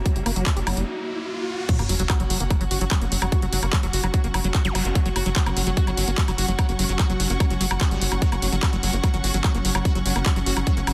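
An overdriven, tight electronic kick drum sits up front in this intense, psychedelic trance clip, driving a straight 4/4 at 147 BPM in F# major and cut from a longer piece. A punchy sequencer bass in sawtooth and square waves, with ring modulation and a plucked filter, pushes low and close beside it, while a layered techno kit adds crash cymbal, handclaps, hi-hat and woodblock with its own grit and small room ambience. Further back, a squelchy, resonant acid bass riff with a filter sweep is coloured by chorus, cassette tape and tape echo. It pumps in sidechain along with a detuned, granular swarming drone and a rich, bowed studio string section playing with light vibrato. Electronic sound effects, a riser, sub drop and zap, arrive at 0.2 seconds and carry through a brief break before the drop lands at 1.7 seconds with an impact. The effects end by 4.8 seconds. The master is dense and heavily limited, with light digital reverb.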